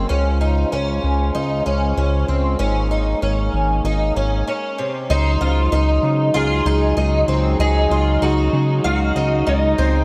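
A floating, dreamy dream pop piece at 96 BPM opens on a French horn section holding smooth-topped chords with light vibrato, a shimmering, octave-doubled twelve-string acoustic guitar fingerpicking arpeggios through ensemble chorus and diffuse ambient delay, and a glossy, up-front chorused synth bass moving from Dbmaj7 to Absus2, until a brief break at 4.5 seconds brings in a twangy, slightly broken-up lo-fi electric guitar melody bathed in lush chorus and delay as the harmony shifts to Ab7/Db at 5.1 seconds, all soaked in a moderate plate reverb.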